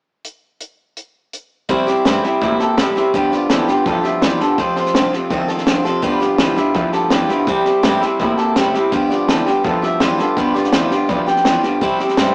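Upbeat and rollicking, this rockabilly piece opens with a dry, punchy compact cocktail drum kit playing alone at 0.2 seconds; at 1.7 seconds a boxy, up-front picked swing acoustic guitar, a woody pizzicato upright bass and a twangy electric guitar riff through a small old amp join in, and a second, slightly broken-up electric guitar carries the melody from 2.2 seconds over C, G7 and F changes, in a rough rehearsal-room sound with tube saturation, small-speaker character and light reverb.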